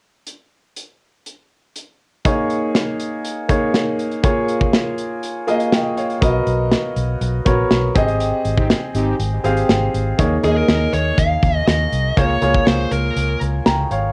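A dark, distorted high-gain lead guitar carries the melody from 10.4 s in this romantic, nostalgic 1980s-style pop excerpt at 121 BPM in Eb mixolydian, set over a tight, mid-forward acoustic drum kit and a clear concert grand piano with deep bass and plate reverb, joined at 6.2 s by a round, foam-muted fingered electric bass and punctuated at 8.6 s by bold, fat analog synth brass stabs with chorus and delay, all within the small-room character of a home cassette recording.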